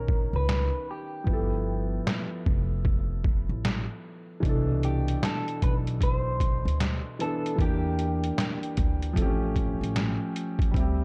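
Up front, a gritty, compressed sampler-style drum kit, pitched down with a thumpy kick, medium-tuned snare, hi-hat and handclaps, drives this nostalgic, hazy lo-fi hip hop excerpt with a swung 16th-note feel from 0.1 seconds. A woody, growly pizzicato upright bass sits beneath a soft, felt-muted upright piano with a mellow, vintage, filtered tone, while an electric guitar through a small old amp carries the slightly broken-up, picked melody with analog chorus and a low-pass filter until 9.9 seconds. The production is dark and warm with little reverb, moving through extended chords such as Bmaj9, G13 and Cmaj13.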